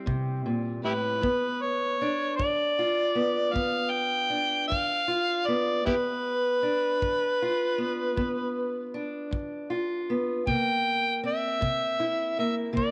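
Acoustic country blues in a laid-back, soulful 12/8 at 52 BPM, this excerpt opens with a dark, boxy fingerpicked parlour guitar up front, joined at 0.1 s by a tight acoustic kick drum played with brushes in a small room. At 0.8 s an amplified, overdriven harmonica takes the lead with a gritty, jazz-style solo, light vibrato and tongue slaps, sitting up front over chords moving from C7 to a long stretch of G7 before returning to C7 at 10.5 s. A moderate plate reverb lends the piece a soft halo.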